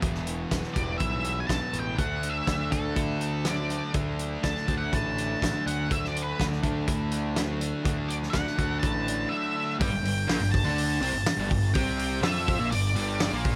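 A straight 4/4 pulse at 123 BPM drives this restless, bittersweet slice of quiet-loud alternative rock, tuned to A4 = 442 Hz and cut from a longer piece. The loose indie drum kit sits up front with a fat snare, tight kick and hi-hat, its rolled-off top giving a mid-forward, studio-room sound. Beneath it, a growly, overdriven fuzz bass anchors two distorted fuzz guitar riffs held in the background, one bright and compressed, the other thick and warm. A very quiet, clean twelve-string electric guitar picks arpeggios until 9.8 s. From 0.7 s a dark octave-fuzz lead guitar carries the melody as a solo with digital delay over Em and Dadd9. At 9.8 s the harmony moves to G5 and a crunchy, double-tracked overdriven guitar riff joins, with a small room ambience framing the band.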